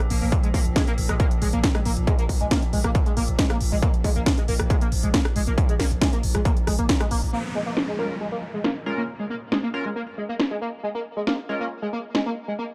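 A dark, warm production with little reverb frames this hypnotic, driving peak-time techno excerpt in Bb minor at 137 BPM, cut from a longer piece. A distorted, up-front electronic kick and an overdriven techno kit with a cracking snare, smooth filtered hats, rim clicks and crash cymbal drive the groove, while a growling, buzzy 808-style bass sits on Bb1 under sidechain pumping until 7.3 seconds. An eerie, metallic inharmonic drone hovers in the background, and a gritty, screaming synth lead with a guitar-like edge, chorus, vibrato and digital delay carries a riff between Ab3 and Bb3 throughout. After a band accent at 6.9 seconds, the kick, bass and drone drop away and a downlifter leads into a second section where an edgy, bright sync-sweep polysynth adds nasal, evolving stabs with tape echo under a filter sweep. The kit plays on until 12.2 seconds, and the lead then rings out at the close.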